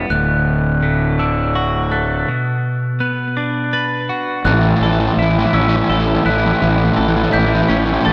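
Post-rock in 3/4 at 83 BPM, this soaring, hopeful passage is cut from a longer piece and set in a lush hall reverb that gives it a big arena sound. A clean, compressed twelve-string electric guitar plays arpeggios up front through analog delay, while a glockenspiel struck with rubber mallets adds mellow, bell-like arpeggios high above, its ringing tone carried by analog delay and slapback echo. Underneath, a growly fuzz bass played with the fingers holds the low end with overdrive. The harmony moves from D to B minor, with a break from 2.3 to 4.5 seconds, then settles on A as a build-up begins. At 4.4 seconds a brilliant, crunchy overdriven guitar enters with a picked riff, sitting loudest in the mix and pushing the music forward.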